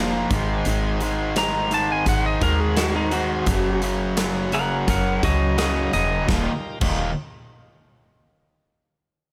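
Driving and confident, this classic rock excerpt sets a twangy, slightly broken-up lead guitar solo over Ab and Gbadd9 chords until 6.3 seconds, where the harmony moves to Ebadd9. Backing it are riffs from a hollow-bodied overdriven semi-hollow guitar and a sludgy distorted guitar, a woody, round FM bass, a very quiet shouting tonewheel organ holding chords through a slow rotary speaker, and a big rock drum kit with punchy kick, medium-tuned snare, hi-hat and crash ringing in a stone room, all in a dry mix.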